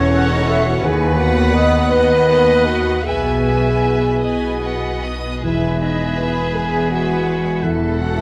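In a rubato 6/8 at 49-59 BPM, this serene, romantic slow movement in E major, a short passage cut from a longer piece, unfolds for symphony orchestra over chords moving from F#m7/E through B/D#, E/B, B and E back to F#m7/E. Mellow French horns hold sustained chords, bowed cello and close double bass sections carry the bass, and a lush viola section accompanies in the background while a ringing, thumb-plucked harp adds very quiet arpeggios. One vibrato-rich chamber violin section sings the melody and another traces a focused second line alongside an airy flute group, a light-vibrato oboe entering at 0.2 seconds and a dark, distant clarinet entering at 0.1 seconds, all set in a wet scoring-stage reverb.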